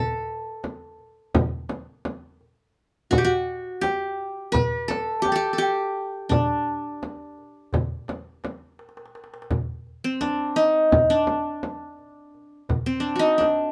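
A modest small room lends a short, natural reverb to this stately, passionate excerpt from a longer Turkish makam ensemble piece in a straight 9/8. The qanun carries the melody up front, its plectrum-plucked triple strings ringing bright and edged across a mid-register line. A small celesta adds a delicate, bell-like second line above it, sweet and close-miked with hard felt hammers, before it stops at 8.8 s. Underneath, a clay-shelled darbuka with natural skin sounds in a live room, while a deep, large frame drum played with soft hands sits close and prominent. A drum fill leads into a new section at 9.5 s, where the qanun and the two drums continue to the cut.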